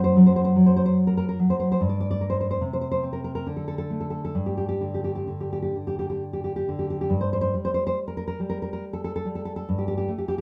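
In a rubato three-beat lilt, this melancholic, passionate romantic excerpt for solo nylon-string classical guitar places the full-bodied, fresh-stringed instrument up front, its thumb-plucked notes and audible finger squeaks ringing in a moderate studio reverb as the music moves into a new section at 7.1 seconds and settles on a suspended chord at 9.7 seconds.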